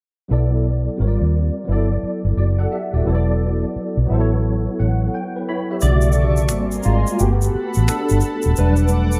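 Sultry and soulful, this neo-soul R&B excerpt at 87 BPM in B minor rides a swung sixteenth feel: a barky tine electric piano, clean through a combo amp with ensemble chorus, and a dark, round, foam-muted fingered electric bass sit up front from 0.3 seconds, the piano moving through chords like Bm7, G#maj9 and Gmaj9 before a fill at 4.4 seconds leads into its solo at 5.8 seconds, where close, dry egg shaker and finger snaps enter and a lush, detuned sawtooth unison pad with ring modulation, chorus and plate reverb slowly swells in at 6.1 seconds, all in a rough home demo mix with light reverb.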